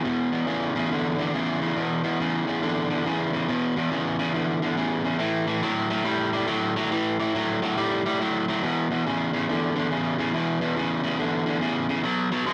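A bright, up-front, lightly reverberant sound carries this laid-back, soulful blues excerpt at 140 BPM with a swung feel, where a lone picked overdriven semi-hollow electric guitar plays low, tape-echoed lines through E5, A5 and B5 power-chord changes across 12.5 seconds.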